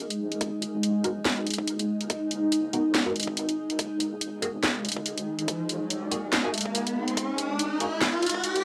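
Recorded at home onto cassette in a small, wet booth, this short, meditative and dark deep dubstep build-up moves at 142 BPM in a swung half-time feel, with an up-front granular cloud pad holding blurred, evolving chords from G#7(no3) to F#sus2 while a deep wobbling bass of square and sine tones sits far in the background. A garage drum kit with a cracking snare, handclaps and hi-hat plays alongside a tight, up-front electronic kick, and from 1.0 s a muted, detuned dub chord stab adds phaser and echo. Filter sweeps run across both the pad and the stab throughout, and an electronic riser enters at 4.8 s to push the tension.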